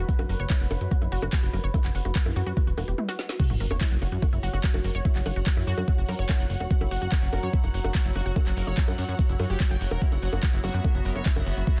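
A straight 4/4 pulse drives this intense, psychedelic trance excerpt, anchored by an overdriven, knocking electronic kick sitting up front and a layered garage kit of woody snare, metallic hi-hats, handclaps, bongos, toms and crash cymbal, with a grainy tube shaker barely audible beneath. A punchy, funky analog bass mixes sawtooth, square and triangle tones with ring modulation, its fast-attack, decaying pluck sounding mellow yet evolving as it plays a low bass line. Above it, a detuned unison pluck with a noise layer spins a riff through digital delay, while a resonant, chorused drone of moving overtones holds sustained chords in the background, both breathing with sidechain pumping. A brief break and drum fill at 3.0 seconds give way to the drop at 3.4 seconds, where a quiet sub drop and impact land and a bright, vibrato-rich studio string ensemble enters with lush bowed texture, also breathing with sidechain pumping. 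The mix is dry and dense, with a heavily limited modern master.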